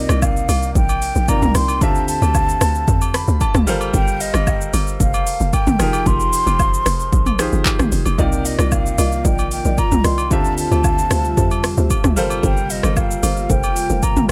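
Amapiano with a deep, late-night mood, cut from a longer piece, where a mellow, airy concert flute carries the melody through digital delay over clear, intimate piano chords with audible action noise (and a piano fill at 2.9 seconds), a hollow, bouncy log drum bass, a punchy deep house kit of handclaps, metallic hats, rim click, shaker and toms, dry agogo bells and woodblock, and, from 8.2 seconds, woody marimba stabs joined by a glassy, ethereal FM pad with sidechain pumping in the background.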